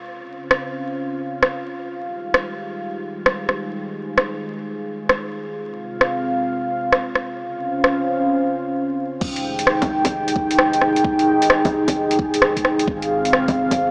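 Soaked in vinyl crackle, a small-speaker tone and a vast ambient reverb, this wistful, nocturnal future garage fragment swings on sixteenths as a moody, detuned sawtooth analog pad holds chorused, sidechain-pumped chords up front, joined at 0.5 s by an overdriven garage drum kit of bongos, crash, rim click and metallic hats, and after a short break a knocking, distorted electronic kick and a round sine sub bass sitting low in the background arrive together at 9.2 s.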